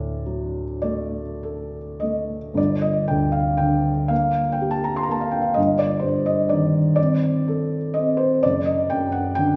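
Heard from further back in a recital hall, this short cut from a longer romantic nocturne is wrapped in wet reverb with its highs dulled away, while the felt-muted upright piano itself sits up front, soft and mellow, with the intimate clicks of its action clearly audible. Playing alone for the full 9.6 seconds in a rubato 6/8, the piano spans from deep bass to the upper treble, moving from a D chord to G minor and settling on D/F# at 8.4 seconds. The mood is melancholic and mournful.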